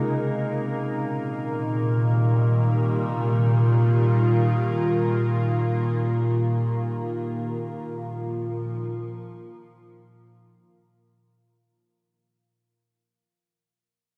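An evolving wavetable pad sits up front in this melancholic, spacious ambient excerpt, its detuned unison layers of triangle and sine tones morphing as they hold sustained chords with a slow attack and long release. The harmony moves from Bbm11 to Ebadd9/Bb at 0.8 seconds. Further back, a resonant drone built from sawtooth and sine waves carries moving overtones, fading in across the whole passage. Both parts are treated with chorus and their own built-in reverb, and the production is dark and enveloped in a wet, cathedral-like space. A fade-out begins at 4.4 seconds, and the clip ends as though lifted from a longer piece.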